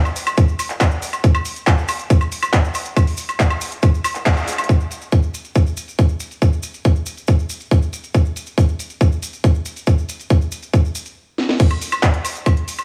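The recording sits in a small digital room with light reverb, its drums pushed up front and overdriven, with a layered, produced electronic edge. This short cut from a longer trance piece runs at 139 BPM in a straight 4/4 and has a hypnotic, psychedelic mood. A drum kit of cracking snare, bright hats, handclaps, woodblock and crash cymbal opens the cut, with low-pass filtering shading the hats, snare, cymbals and percussion, and a tight electronic kick joins a moment later to drive the groove. Grainy, mellow acoustic maracas sit far back in a live room sound. The opening drop gives way to a new section at 4.7 seconds after a band accent and a drum fill. A stop at 11.2 seconds and a second fill lead the drop back in at 11.6 seconds.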